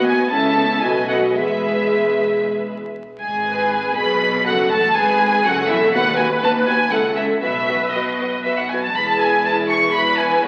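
A clear, focused violin section carries the cheerful, graceful melody up front in this quick classical-period movement for string orchestra in E major, moving in a rubato 3/4 at around 109-124 BPM. Beneath it, an expressive second violin section with a soft attack and a smooth, lush viola section fill the middle, while smooth, even cellos and distant double basses supply the bass, all playing throughout the 10.5-second fragment cut from a longer piece. A scoring-stage reverb lends space, and the sound carries the crackle of a very old 78 rpm record, with the harmony turning to G#m at 3.0 seconds before settling back on E.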